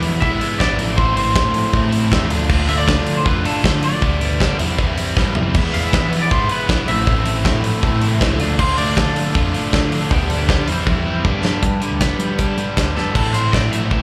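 A straight 4/4 beat from a big, punchy rock kit with a fat snare and bright cymbals anchors this bittersweet, cool indie rock cut, with drum fills at 5.2 and 10.9 seconds, while a growling, overdriven picked bass joins a scooped, double-tracked overdriven guitar riff with slapback echo that sits up front. A clean, twangy lead guitar carries the melody over a minor-key progression that comes to rest on an Am7. From 5.5 seconds a very quiet tonewheel organ adds sustained chords through a slow rotary speaker, and the whole performance sounds like a live club gig heard through the venue's PA in a small, reverberant room.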